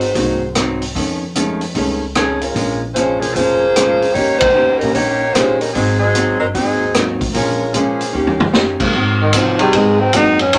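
Big band swing with a brassy, swinging mood: a saxophone section carries the melody up front, backed by a dark, clean, compressed hollow-body archtop guitar, a woody, thumpy pizzicato upright bass, and a vintage drum kit with dark cymbals and a punchy kick. An intimate baby grand piano with audible action noise sits in the background, and the band hits an accent at 4.4 seconds before a drum fill at 8.1 seconds. From 9.2 seconds a breathy, soft-attacked tenor saxophone takes a vibrato-laden solo over sustained section chords, all in a wet small-room reverb, in this cut from a longer piece.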